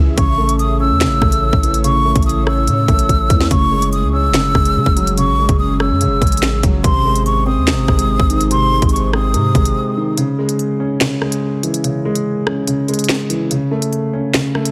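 A breathy concert flute carries the melody high in its range, up front and expressive, with vibrato, tongued notes and lifted highs. It gives this ominous, menacing drill cut, taken from a longer piece, its eerie lead at 144 BPM in a half-time feel in C# harmonic minor. Beneath it, a dark, mellow grand piano sits close and intimate with audible action noise and a vintage smoothness. An ethereal, airy pad with detuned unison, ensemble chorus and built-in reverb hovers in the background on slow-attack chords. A punchy, heavy 808-style bass with a sine core and noise layer drops out at 9.8 seconds, and the flute and pad stop at 10.1 seconds, leaving the piano and the electronic drill kit to continue. The kit has a hard-clipped kick, sharp snare, crisp hats, handclaps and rim clicks, and the chords move from A through F#sus2 and G# to C#m and back to A, all within a dry, heavily compressed radio sound.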